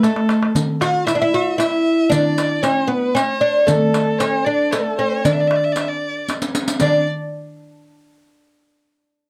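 A drum fill opens this festive, passionate Arabic ensemble piece in D maqam rast, moving at 115 BPM in a straight 3/4 and tuned to A4 = 441 Hz. The woody, fretless oud carries the melody up front, its plectrum-plucked double strings sounding between A3 and a quarter-flat F#4. A single bowed violin, distant and expressive, adds a second line higher up with vibrato and portamento. The small, high clay darbuka, struck with soft hands, has a compressed, saturated edge, while the riq's bright jingles come from hard hands in a live room. A second drum fill arrives at 6.3 seconds, and the parts fall away around 7.1 seconds in this dry, close 1970s-style studio sound with light reverb, cut from a longer piece.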